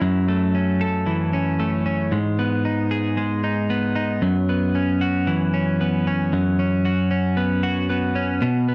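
A dry, close 1970s-style studio sound with a modest booth ambience frames this short cut from a longer indie pop piece, youthful and nostalgic at a straight 114 BPM in 4/4. A lone twelve-string electric guitar sits up front, brilliant, clean and twangy, picked and compressed, with tube saturation and spring reverb colouring its tone across a range from F#2 to A4. It moves through F#m7, G#m and F#7sus4, shifting into a new passage at 6.3 seconds before the clip ends around 8.7 seconds.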